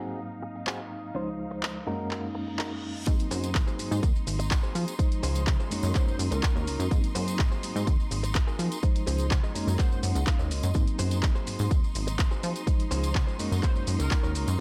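A straight groove drives this sunny, funky slice of filtered disco house, with a reedy electric piano shimmering in fast tremolo and phaser, a lush, distant violin section holding sustained chords with gritty sampler texture, a bright clean electric guitar riff, a tambourine in the background and a punchy analog drum machine of handclaps, hi-hat and shaker. A reverse cymbal leads into the drop at 3.1 seconds, where an up-front layered kick drum and a plucky, saturated analog bass arrive, while fat, detuned synth brass slips in brief chorused phrases and the guitar plays a fill around 9.3 seconds. The low-pass filtered, sidechain-pumped parts breathe inside a digital ambience, and the clip is cut from a longer piece.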